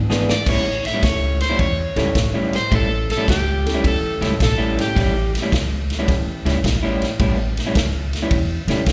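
An electric blues shuffle with a gritty, swaggering mood, this short excerpt from a longer piece opens on a drum fill before settling onto an A7 chord at 0.5 seconds. The vintage drum kit sits up front with a punchy kick, a medium-tuned snare, ride and crash cymbals, all carrying a natural small-room character, while the upright bass supplies a thumpy, woody pizzicato low end from its gut strings. A slightly broken-up electric guitar through a small old amp picks out the riff with slapback echo. An overdriven semi-hollow guitar, hollow-bodied and placed up front, carries the melody from 0.3 to 5.3 seconds, also touched by slapback echo. Behind them, a mellow, smooth upright piano with a vintage tone fills in accompaniment from 1.0 seconds, sitting in the background, and the whole performance sounds like a live gig heard through the venue's PA in a recital-hall reverb.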